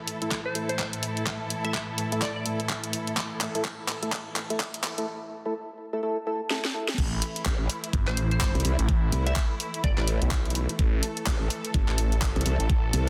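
A growling, wobbling bass leads this aggressive, bouncy bass house excerpt at 126 BPM in A minor, entering at 7.5 seconds beside a swirling phased saw bass that opens the drop at 7.0, after a build-up where a hollow, nasal organ stab under a filter sweep, a glassy wavetable pluck, an ethereal pad and veiled, muted strings with gritty 12-bit sampler texture sit over drum fills from a cracking, overdriven garage kit with handclaps and crash and a knocking electronic kick.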